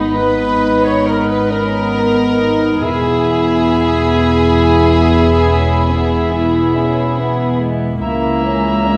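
A reverberant hall bloom surrounds this excerpt from a slow romantic orchestral movement, elegiac and solemn, unfolding in a rubato 12/8 at 46 BPM. Two violin sections carry the melody and a second line with soft-attack sul tasto bowing: one rich and set in the background, the other close and intimate with light vibrato. They share their register with a mellow, very quiet clarinet and a very quiet, tight trumpet section playing stabs. Above them a clear cor anglais and a silver, distant concert flute with vibrato hold high second lines. A dark, floating viola section gives very quiet accompaniment, while a bright, very quiet trombone section and a roomy French horn section, entering at 0.1 s, sustain chords over cello and double bass sections that anchor the bass, the cellos warm and both with light vibrato. The harmony moves from G#m to E, and the violins, clarinet and trumpets drop out around 7.6 s before the close on A#dim/C# at 8.0 s.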